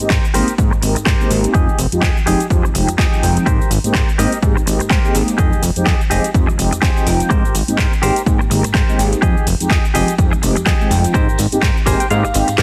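A heavily compressed, radio-like sound with light reverb frames this joyful, funky slice of filtered disco house, cut from a longer piece and moving at 125 BPM in 4/4 with a 56% swing on the sixteenths in Ab major. A filter sweep runs across the whole 12.6 seconds, while the harmony alternates between Abmaj9 and Fm9. A fat, detuned sawtooth bass with a saturated filter pluck pumps against the punchy, overdriven electronic kick, and the house drum kit adds a cracking snare, metallic hats, handclaps and shaker, all re-recorded in a large room. A mellow, round synth brass part with chorus and phaser carries dark, sustained chords, and a clean, picked semi-hollow electric guitar plays a compressed riff, both pulsing through sidechain pumping and a low-pass filter. A very quiet, band-limited tambourine sits far back in the mix, and near the close a clean guitar fill arrives at 11.6 seconds, followed by the kick dropping out at 12.1 seconds.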